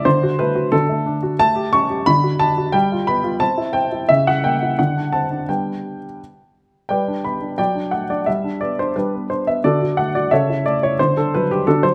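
Close, detailed microphones and a light reverb put a baby grand piano up front, with an intimate, natural tone, short sustain and audible action noise. This graceful, cheerful classical-period sonatina in G major moves at 89 BPM in a straight 2/4, the solo piano spanning C#3 to C#6. Cut from a longer piece, the passage states its opening phrase and then begins it again at 6.9 s, ending on a D chord at 11.0 s.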